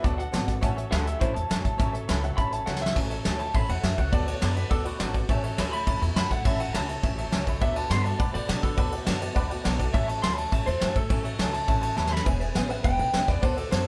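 A rollicking, rowdy rockabilly excerpt opens with a band playing live in one room, with a thumpy gut-string upright bass, an up-front brush kit with a fat snare and dark cymbals, a boxy picked archtop acoustic guitar and a jangly, detuned honky-tonk upright piano, while a slightly broken-up, lo-fi electric guitar through a small old amp carries the melody and, after a drum fill at 2.7 seconds, takes a solo from 3.0 seconds to the end, set in moderate studio reverb.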